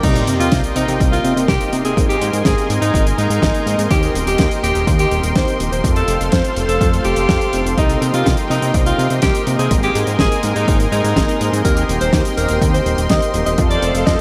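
A bright, present alto saxophone with light vibrato sings the melody over a lush, nasal unison pad, dark chorused synth brass stabs, a fat detuned analog bass, a punchy tape-warm electronic kick and a dry 70s drum kit with a fat snare, while a sub drop opens this danceable, nostalgic italo disco excerpt, all soaked in a dreamy, huge ambient reverb.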